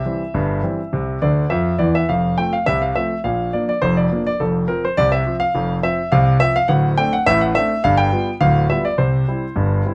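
A vintage-toned concert grand sits up front in light reverb, its deep bass and smooth tone giving this short passage from a longer ragtime piece a playful, cheerful glow. The solo piano moves at 104 BPM in a straight 2/4 in F major, opening with a brief section whose fill at 1.2 seconds leads into a longer second section from 2.1 seconds. That section travels through F, Bb and G7 before settling back on C.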